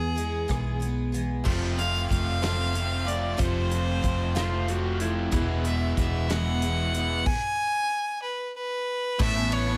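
Set in a small room with light reverb, this jangly, nostalgic folk rock and heartland rock cut moves at 62 BPM in 6/8 over E and F chords, with an up-front, clear fiddle carrying the melody above a bright, shimmering octave-doubled twelve-string acoustic guitar and a dark, round hollow-body bass. A natural country kit with a fat snare and punchy kick drives the groove, a biting, double-tracked overdriven guitar riff enters at 1.4 seconds, and a clean lap steel adds a brief slide line with volume swells and slapback echo around 4.4 seconds. After a stop, a reedy musette accordion sounds in the background on an Aadd9 chord at 9.2 seconds, where this piece of a longer track ends.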